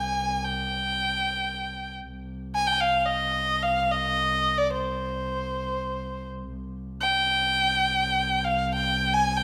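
Arabic maqam ensemble music in free time and C minor, tuned to A4 = 438 Hz, this hypnotic, melancholic excerpt runs 9.4 seconds and is cut from a longer piece. A single bowed violin carries the melody up front between C5 and Ab5, its nasal, smooth tone shaded with vibrato and a boxy color. Beneath it a lone bowed double bass holds a drone on C2 with a reedy gut-string tone and light vibrato, both set in the wet reverb of a recital hall.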